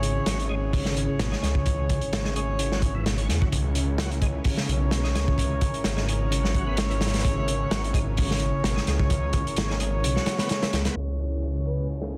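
A crunchy, saturated breakbeat kit sits up front beside a thick, menacing detuned saw bass in this funky, gritty 129 BPM breakbeat cut in C# dorian, while a lightly overdriven tonewheel organ riff with key click and slow rotary plays in the background until 11.0 s. Mellow horn stabs with dub echo punctuate as a lush unison pad with sampler grit holds a C#m chord, and as a filter sweep arrives near the close, a very quiet downlifter enters at 11.1 s and a breathy, flute-like synth lead with an AM radio tone sounds one brief B4, wrapped in light small-room reverb and vinyl crackle.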